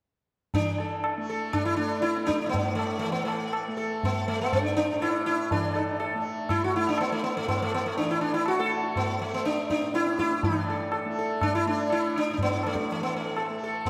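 Soaked in a lush hall reverb with a long 2.5-second tail, this dreamy, serene excerpt of Hindustani classical music drifts at 122 BPM in a straight 5/4, tuned to A4 = 442 Hz. The sitar carries the melody up front between A3 and A4, its plectrum-plucked tone round and buzzing, with sympathetic strings shimmering around each note and a tape echo trailing behind. A low-tuned tabla rings underneath with the air of a live room, sitting further back in the balance. Beneath both, a softly plucked tanpura sustains a buzzing drone from A2 to A3, entering at 0.6 seconds, just after the other two parts. All three play together until 13.9 seconds, and the devotional mood holds steady throughout this fragment of a longer piece.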